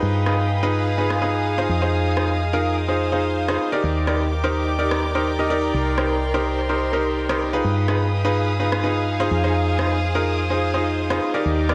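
Energetic yet bittersweet, this piano house excerpt sets a bright, brilliant concert grand riff with delay up front over a punchy, round FM bass, while a veiled, con sordino violin section holds sustained chords beside a distant, earthy chamber string texture, and an overdriven electronic rim click enters in the background at 0.3 seconds, all moving through a G7b9b13, Fm7, Ebmaj7 and Cm7 progression in a small room.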